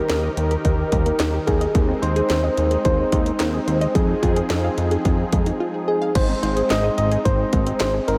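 A straight 4/4 house drum kit, with a punchy kick, cracking snare, handclaps, hi-hat and crash, drives this bright, upbeat synth-pop excerpt at 109 BPM in Ab major, where a fat, detuned analog bass sits up front beneath a bold, brassy pad with chorus and vibrato, a very quiet, lush unison pluck traces arpeggios, and a round, gentle, keys-like FM lead carries the melody through chorus and analog delay, all in a dreamy mix soaked in huge ambient reverb.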